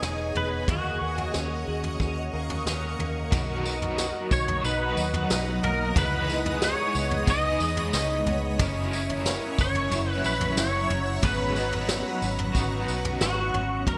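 A pedal steel guitar carries the melody from 0.4 s, its clean, fingerpicked tone gliding with slide and volume swells through ensemble chorus and digital delay. This is a floating, ethereal dream pop piece at 91 BPM in B major, cut from a longer work, with an electric guitar through a small old amp picking slightly broken-up, lo-fi arpeggios beneath it. A shimmering pad holds sustained chords high above, its detuned, granular sound lifted by an octave-up shimmer, phaser and chorus, while a round, foam-muted electric bass keeps the low end dark and punchy. A vintage brush drum kit sits distant and roomy, with a tight kick, high-tuned snare, tambourine and toms wrapped in gated reverb. At 3.3 s an overdriven, double-tracked semi-hollow guitar joins in the background with tremolo and lush chorus as the harmony moves from Bmaj7 through C#m9 and F#7 toward G#m11. A moderate plate reverb and bright 1980s-style digital production give the whole a glossy, spacious finish.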